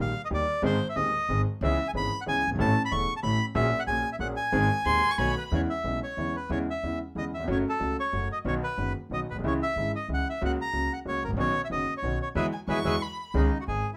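This tango excerpt, cut from a longer piece, moves at 184 BPM in a rubato 3/4 with a passionate, playful mood, settling into E major from 5.5 seconds. A reedy, bright bandoneon carries the melody up front throughout, singing from D#4 up to C#6. A clear, polished concert grand piano supplies the accompaniment with a deep bass and short sustain, while a woody, dark upright bass with steel strings is plucked beneath it. A single bowed violin, warm and expressive with vibrato, portamento and a soft attack, adds a close second line in two brief appearances, at 4.9 seconds and again near 12.5 seconds. The band lands an accent together from 12.4 to 13.3 seconds over an Eadd9 chord, and a moderate studio reverb gives the ensemble a compact sense of space.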